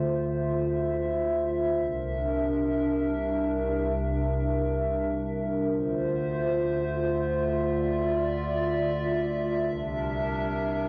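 A warbly, tape-like pad carries this brief, ethereal hip hop excerpt entirely on its own, sitting up front from 0.0 to 10.9 seconds. Its detuned, wave-folded tone blends square and triangle waves, with a slow attack, long sustain and lingering release, softened further by chorus and its own built-in reverb into a mellow, nostalgic wash. In free time and D minor, the harmony drifts from Dm7 to C7, then returns to Dm7 at 5.7 seconds for a second passage before settling again on C7. The pad spans a broad register from C2 up to E5, giving the melancholic mood a full, enveloping body. A modest small-room reverb and the character of a home cassette recording lend the whole piece a vintage, lo-fi intimacy.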